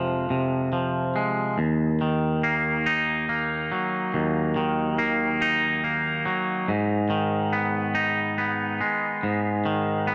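A dark, warm studio sound with a moderate large-room reverb frames this brooding, cinematic rock fragment in a straight 6/8, cut from a longer piece. A lone clean, twangy electric guitar, fingered and up front, moves from F minor to E-flat minor at 1.6 seconds and on to A-flat minor at 6.7 seconds, building tension from 1.6 seconds to the close.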